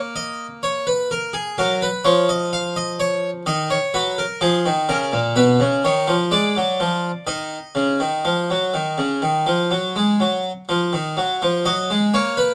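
Close, detailed microphones in a small room with moderate reverb catch a brilliant, full Flemish-style harpsichord with three sets of strings, its plucked tone airy and up front. This serious, driving baroque-style two-part invention is cut from a longer piece, with the solo harpsichord spanning Bb2 to E#5 across a steady 4/4. The harmony moves from A#m through F# and Badd9 to settle on Ebm, and a new section begins at 11.2 seconds before the passage breaks off at 12.5 seconds.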